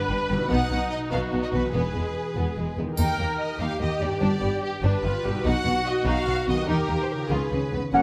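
Set in a lilting 6/8 metre, this heroic adventure film-score cue unfolds with a soaring, heroic mood, cut from a longer piece. Lush bowed violins carry the melody with vibrato, while a second violin line with a soft attack and expressive shading sits beneath. Rich violas supply the accompaniment, and a woody, distant cello section joins the rich double basses to form the bass, as a ringing, fingerpicked concert harp plays arpeggios in the background. A close, dry triangle sounds briefly at 3.0 s, and the harmony moves through colourful major chords, from G through B, E and Eb before settling on Db7. At 7.9 s the music opens toward new colours: an airy, up-front flute and a clear, present clarinet add second lines, a dark, tight trombone section and a barely audible mellow French horn section hold sustained chords, and a mellow trumpet adds a soft stab, all within a light reverb.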